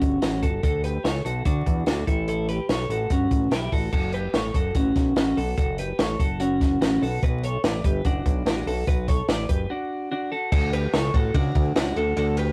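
A rough rehearsal-room recording with light reverb, warm saturation and vinyl crackle frames this youthful, nostalgic excerpt of jangly indie pop in D major, moving at a straight 146 BPM in 4/4. Up front, a bright, clean, twangy twelve-string electric guitar picks compressed arpeggios, a fat, detuned sawtooth analog bass holds a thick, sustained low end, and a compact cocktail drum kit sounds dry and acoustic, with dark cymbals, a high-tuned snare and a punchy kick. The harmony moves from A and D through F#m and Bm, pauses for a brief break at 9.7 seconds, then lands on Dmaj7 at 10.5 seconds.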